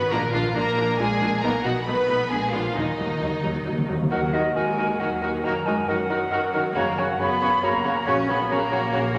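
This dramatic, stormy classical excerpt opens with the full string body at once: a warm, expressive violin melody with a soft attack and smooth top, a rich, distant second violin line, clear, intense cellos, a rich viola in the background, and a rich, distant double bass foundation. Beneath them a bright, ringing concert harp plays fingerpicked arpeggios. Moving at 137 BPM in 3/4 and set in Eb minor, the harmony passes through chromatic chords over the first few seconds before settling on Ebm at 2.8 seconds, where a round, soft-malleted timpani fill on calf heads sounds until 4.1 seconds. At that point the woodwinds join for the repeat of the opening section: a pure, silvery flute with crisp attack takes the most prominent second line, alongside a clear oboe, a mellow, roomy clarinet holding a single note, and a warm bassoon in the accompaniment. The close of the passage leans toward Gb major, and a wet scoring-stage reverb gives the ensemble a lush, spacious glow.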